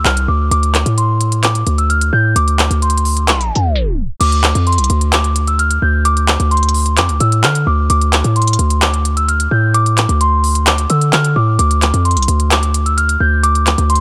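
Dark, eerie trap in a half-time feel, cut from a longer piece, built on a delicate, bell-like celesta melody softened by a low-pass filter and tape echo. Beneath it, a distorted 808-style bass sits up front, heavy and aggressive with a fast attack and a noise layer, while an electronic trap kit with crisp hats, handclaps and crash cymbal enters at 0.1 seconds. A tape stop from 3.3 seconds drops into a brief break before the music resumes at 4.2 seconds, all set in a digital ambience.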